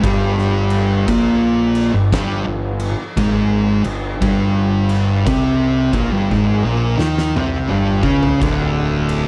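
Brooding and hypnotic, this short stoner and doom metal fragment crawls at 57 BPM with a swung 4/4 feel, as two thick, up-front fuzz guitars grind out a distorted picked riff over a G#maj9/G chord, a bright, punchy overdriven picked bass sits beneath them, and an oversized low-tuned acoustic drum kit with a boomy kick, fat snare, dark cymbals and a pumping big-room sound rolls into a fill from 6.3 to 8.4 seconds before the harmony drops out.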